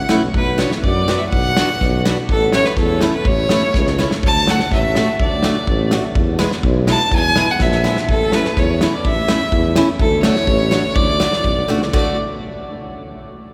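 Set in a 2/4 with a loose, rubato feel, this bouncy, festive cut from a longer alpine folk dance tune carries the lively step of an alpine dance band. A single bowed fiddle sits up front with the melody, its biting, intense tone touched with light vibrato yet slightly distant in the space. Beneath it, a mellow tuba plays a soft-attacked, classical-style bass line, while a picked parlour steel-string guitar adds a boxy, fresh-stringed accompaniment. A loose indie drum kit with a punchy kick, medium-tuned snare, dark cymbals and a rolled-off top keeps time and drops fills at 3.8, 7.6 and 11.7 seconds. The harmony moves from B minor through A, D, E and back to A and D, all bathed in a long, wet cathedral reverb that gives the recording the airy resonance of a church or concert hall.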